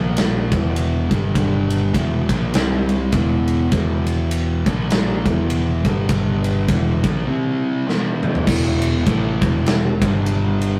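Sludgy and heavy, this stoner and doom metal excerpt in E minor rolls at 101 BPM with a swung 4/4 feel, as a double-tracked, fuzz-drenched guitar riff sits up front over round, overdriven picked electric bass and a punchy, big-room acoustic drum kit with a rolled-off top, whose fill at 7.9 seconds leads into a new section at 8.5 seconds, the whole captured as a rough rehearsal-room recording with light reverb and warm saturation.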